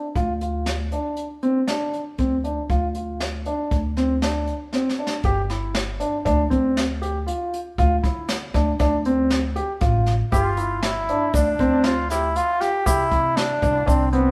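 A close-miked flugelhorn with light vibrato enters up front at 10.3 seconds, alongside a grainy tube shaker, to carry a jazz-style second line over this intricate, brooding progressive instrumental in 5/4 at 118 BPM in D minor, where a deep-bassed concert grand spins long-sustained arpeggios from the start, a woody, growly pizzicato upright bass and a brushed drum kit with a high-tuned snare, tight kick and rolled-off top play as a live band in a moderate stone room with a drum fill at 4.7 seconds, and lossy compression artefacts colour the sound of this excerpt.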